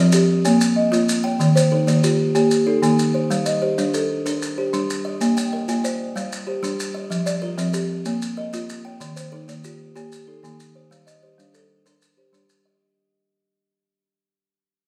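A folk marimba played with medium mallets sits up front, its hardwood bars giving a woody, dry, rustic tone as it spins arpeggios from low Eb3 up to G5. Beside it, a buzzing kalimba, also up front, rings out thumb-plucked arpeggios over the same span, its hollow-box body adding a rattling shimmer to the interlocking cycle. Grainy, mellow maracas supply the percussion, and both the maracas and the marimba carry a vintage, band-limited character. This southern African traditional piece moves in a rippling, gently warm mood with a straight 12/8 feel, cycling through Eb, G minor, Bb and F harmonies. The group plays live together in one room, bathed in a wet, large studio reverb, and the whole passage, cut from a longer piece, fades out from 0.6 seconds to its close at 12.8 seconds.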